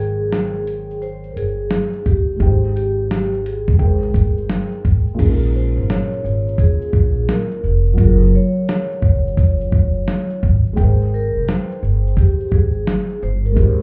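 A swung 4/4 lo-fi hip hop groove, mellow and cosy, puts a gritty sampler-style drum kit with a thumpy kick up front from 0.3 seconds beside a woody pizzicato upright bass, while a dark, boxy felt-muted upright piano with audible action noise accompanies a ringing soft-mallet vibraphone melody carrying slow motor vibrato and analog delay, a very quiet grainy egg shaker slips in at 5.2 seconds, and the whole excerpt sounds muffled, as if heard through a wall, with club reverb.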